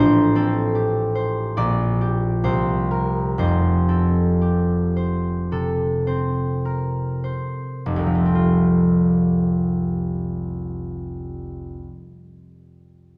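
A ringing concert harp plays alone in this peaceful, graceful classical excerpt in F major, fingerpicked and sitting up front as it spans from F1 to D5 before falling silent at 11.9 seconds. The rubato pulse drifts between 48 and 78 BPM in 4/4, slowing through the opening 7.9 seconds as the harmony moves from Am7 through Gm/Bb and C5 to settle on F. A reverberant recital hall surrounds the instrument, lending the sense of hearing it from further back in the room.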